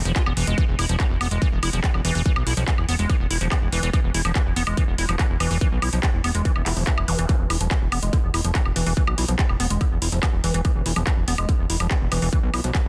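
Alien and psychedelic, this excerpt of psychedelic trance drives at 143 BPM in a straight 4/4, built over an E5 chord. A distorted electronic kick sits up front with a touch of studio reverb, alongside a layered techno drum kit of handclaps, metallic hi-hats and woodblock. Beneath it, a fat analog bass rumbles low between E1 and B1, its detuned sawtooth tone thick, saturated and sustained, shaped by a filter sweep. Over the top, a squelchy liquid acid bass riff ranges from D3 to F4, its resonant square wave decaying through chorus, tape echo and sidechain pumping. At 6.6 seconds a faint electronic swell and zap passes in the background, and the whole piece comes across as dry, dense and heavily limited in a modern master.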